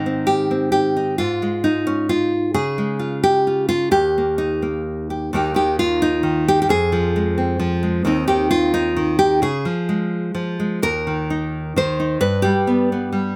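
A loose, rubato triple-time sway carries this gentle, peaceful folk fragment from a longer piece, where a lone fingerpicked nylon-string guitar with a deep, full-bodied classical tone sits up front in a close, dry, detailed recording that catches the squeak of fingers on strings, drifting into a fresh passage at 5.3 seconds.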